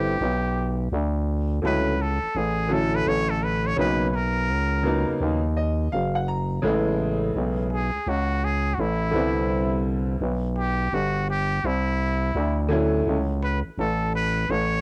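Jazz-hop with a relaxed, smooth mood at 84 BPM in A major, swung on the sixteenths and cut from a longer piece, with major-ninth chords under a muted trumpet solo that runs the full 14.8 seconds. The trumpet is nasal and breathy, close-miked and intimate with a soft attack and vibrato, carrying a cassette-tape colour and plate reverb, while a growling, thick FM bass sits up front with a fast attack. A bright baby grand piano in plate reverb supplies accompaniment and a fill from 5.2 seconds before dropping out at 13.2, all captured as a home recording on cassette with light reverb.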